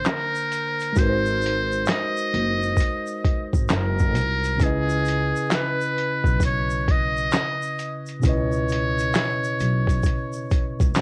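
Melancholic and nostalgic, this swung lo-fi hip hop excerpt sets a buzzy, breathy muted trumpet with light vibrato and scooped notes up front over a mellow tine electric piano, muffled, pitched-down sampler drums with a thumpy kick and overdriven grit, a grainy egg shaker in the background, and a woody pizzicato upright bass that enters at 1.0 s, all captured on cassette, with plate reverb on the trumpet and electric piano, as the chords move from A# to G#7 and settle on C#m7 at 4.6 s.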